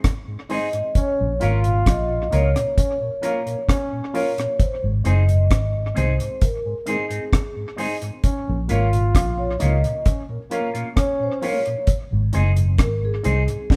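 A dry, dark reggae drum kit with hi-hat, rim clicks, a high-tuned snare and a tight kick sets a straight, serious and meditative roots reggae groove at 66 BPM in Bb minor, joined by a round, foam-muted vintage electric bass up front, a clean picked guitar through an envelope filter, woody upright piano stabs with audible action noise, a flute-like tonewheel organ with slow rotary speaker and dub echo in the background, a ringing, metallic soft-mallet vibraphone melody, and a punchy trombone second line with light vibrato from 1.0 s to 11.6 s, in a band sound with light reverb cut from a longer piece.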